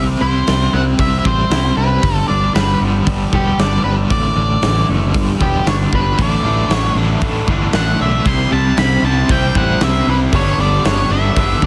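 Quiet-loud alternative rock in a straight 4/4, this short excerpt cut from a longer piece carries a bittersweet, restless mood. A dark, fuzzy octave-fuzz lead guitar plays a solo melody from start to finish, its distortion trailed by digital delay, over a crunchy overdriven guitar riff with tremolo and a growling, overdriven fingered bass. A bright, twangy clean guitar picks arpeggios with delay in the background until 6.2 seconds, when a bright, compressed overdriven guitar takes up a second riff. A big rock drum kit enters at 0.5 seconds with hi-hat, a punchy kick and a medium-tuned snare, its sound dark and smooth with a rolled-off top in a big room. The chords move through C, G and Asus4, and the whole is wrapped in light reverb and a heavily compressed radio sound.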